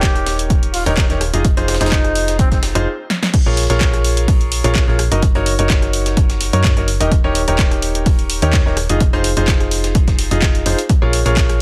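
A punchy electronic kick sits up front at 127 BPM in 4/4 with a light 16th-note swing, joined by a tape-warm analog drum machine's claps, rim clicks, hi-hats, snare and crash, plus a very quiet, gritty, pitched-up breakbeat kit, in this energetic, bittersweet piano house cut in Bb minor. A clear grand piano riff with digital delay and a round, dark FM bass both pump against the sidechain over Eb7, Fm7, Bbm7 and Gb6 chords, while a veiled, distant bucket-muted trumpet melody with its own delay sounds only until 2.6 s. After a brief stop and a drum fill, the drop lands at 3.3 s, and the dense, heavily limited mix stays dry.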